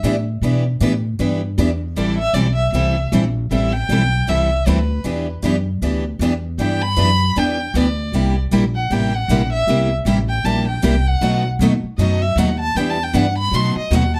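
This short excerpt has a close, up-front studio sound with a moderate reverb that stays light around the instruments. It is bittersweet, virtuosic acoustic string swing in the jazz manouche style, moving at 156 BPM in 4/4 with a light swing on the eighth notes, in E minor and tuned a touch high. Two picked steel-string acoustic guitars carry the accompaniment from the start. One is bright and concert-sized, with audible finger squeak, and the other is quieter and boxy, with a parlour character. Beneath them, a pizzicato upright bass on gut strings gives a woody, thumpy, dark low end. At 2.0 seconds a bowed violin enters as a soloing second line, playing with smooth vibrato and a warm, even tone over a minor progression that passes through Am9, C7 and B7 before returning home to E minor.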